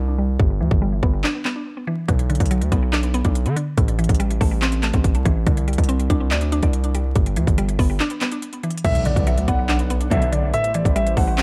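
A hard-hitting, saturated 808-style bass anchors this menacing trap cut in B phrygian at 142 BPM with a half-time feel, sitting up front beside a woody, FM mallet-like synth pluck that opens under a filter sweep with chorus and tape echo, while the electronic trap kit enters at 0.4 s with a hard-clipped kick, crisp hats, handclaps and crash. At 8.8 s a dark, mellow grand piano melody arrives with long sustain and tape echo, joined by a hollow, flute-like pad in the background and a very quiet impact, and a brief stab from a distant, bowed string section lands at 10.1 s. The echo-heavy mix carries vinyl crackle and little reverb, and the clip is cut from a longer piece.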